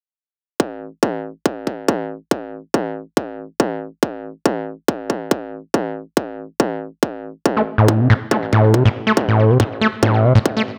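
A light reverb and digital ambience frame this short cut from a longer driving peak-time techno track, set in A minor at 140 BPM in a straight 4/4. The mood is hypnotic and intense. A layered, distorted electronic kick drum carries the drums up front from 0.6 seconds, shaped with a high-pass filter. At 7.6 seconds an overdriven acid bass riff arrives between A2 and A3, squelchy and gritty with a resonant sawtooth filter pluck that has a fast attack and a decaying tail. Treated with distortion, sidechain pumping and delay, the bass sits even more prominently than the kick and carries on until 10.6 seconds.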